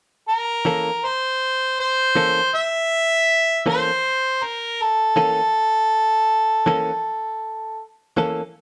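Blues at 80 BPM with a light swing, soulful and rollicking, in which a mellow, distant harmonica with overdrive carries an up-front pop-style solo melody from 0.3 seconds while a bright, twangy clean electric guitar, picked, compressed and treated with tremolo, adds stabs from 0.7 seconds over a C13b9/E chord, the band captured live together in one room with moderate studio reverb in this short cut from a longer piece.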